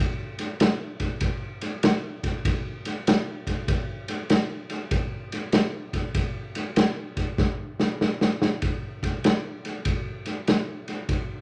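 A swung 4/4 blues groove at 97 BPM carries this swaggering, rollicking drum passage, cut from a longer piece, as a vintage acoustic kit of kick, snare and ride cymbal enters at 0.4 seconds and sits up front. The punchy kick, medium-tuned snare and dark cymbals have a rolled-off top and a pumping small-room character, set in a moderate large-studio reverb. A drum fill at 7.4 seconds leads into a new section at 8.6 seconds.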